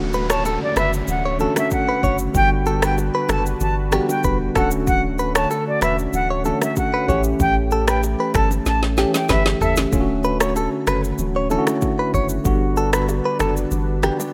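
A bell-like tine electric piano, a smooth detuned sawtooth pad, a punchy sine sub bass with a pitch-drop attack and a background downlifter open this joyful, breezy afrobeats excerpt in D major at 95 BPM, moving through Dmaj7, Gmaj7 and A7 chords. A direct-recorded, compressed clean guitar riff with vibrato and digital delay joins at once, along with an electronic afro-pop kit with a deep kick, woody snare, snaps, rim clicks, shaker and toms, plus very quiet, close and dry bongos and congas. An airy, reedy jazz flute with soft attack and digital delay carries the melody until 9.8 seconds, just as a drum fill wraps up, all within a rough home demo mix with light digital ambience.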